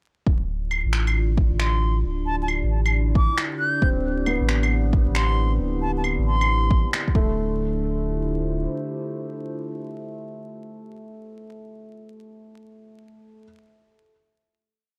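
A muffled, overdriven two-step kick and a skittering, shuffled beat of electronic claves and finger snaps drive this wistful, melancholic future garage piece at 135 BPM in 4/4, with a heavy swing on the 16ths. From 0.3 seconds a round sine sub bass with tube saturation plays a dub-style line, pumping under the kick, while a warbling, detuned tape-like pad holds slowly shifting chords in D minor, soaked in chorus and its own reverb. An airy concert flute, close-miked and full of vibrato, sings short expressive phrases high above, trailed by analog delay. A woody upright piano adds scattered notes dusted with 12-bit sampler grit and tape echo. The groove gives way at 7.4 seconds to a final Dm11 chord, and the piano lingers beyond the pad, ringing until 13.4 seconds. The whole recording has a dry, gritty hardware character with vinyl crackle and a lo-fi, nostalgic haze.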